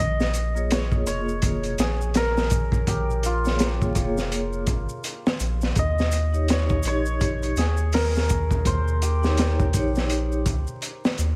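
A crunchy, gritty breakbeat kit with a high-tuned snare and tight kick sits up front beside a round, deep analog bass in this brooding, cinematic trip hop excerpt at 83 BPM in Bb dorian, while a shimmering hammered dulcimer carries the melody through tape echo, a metallic vibraphone with medium mallets adds tremolo-laced accompaniment under a filter sweep from 0.5 seconds, and close, dry maracas sit in the background over Bbm7 and Eb7 chords, all touched by studio reverb and vinyl crackle.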